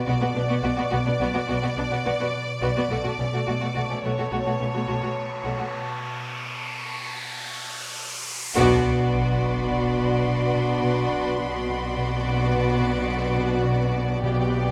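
Ominous and eerie, this cinematic suspense cue from a longer score moves at 106 BPM in 5/4 in B minor, where a clear, vibrato-laden violin section carries the melody over a ringing, thumb-plucked concert harp riff in the background, a smooth studio violin second line, rich viola accompaniment, a very quiet cello section and a bright, focused double bass section on the bass, while a lush high violin texture sits above, an electronic riser and sub drop arrive at 4.0 s, a mellow French horn section enters with sustained chords at 8.6 s on the impact, and round, soft-mallet timpani close things at 14.2 s, all set in a wet scoring-stage reverb.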